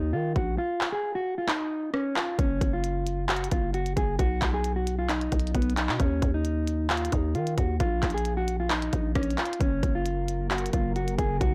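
A growling, buzzy 808-style bass with transformer saturation and a dark, clean, fingered electric guitar sit up front in this brooding, melancholic half-time hip hop and trap cut at 133 BPM, joined at 0.4 seconds by a glitchy electronic drum kit of tight kick, clicky hi-hat, handclaps and rim clicks whose kick drops out from 0.6 to 2.4 seconds, while a glassy, ethereal FM pad with ensemble chorus drifts in the background from 10.0 seconds, all captured in a dry, blown-out, overdriven recording.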